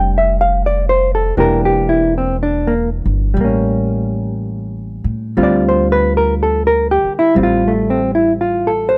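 Wistful and smoky, this slow jazz ballad drifts along in a gentle swung four. A dark, clean hollow-body electric guitar, fingered and placed up front, carries the accompaniment across the full 9.0 seconds, voicing lush extended chords from a rootless Bb69 through Em7b5 and A7b9 before settling on Dm7. Beneath it, an acoustic upright bass played pizzicato on steel strings adds a woody low end, also close and present. A light reverb lends the pair a soft sense of space. This brief passage is cut from a longer piece, offering a single unhurried turn through these harmonies.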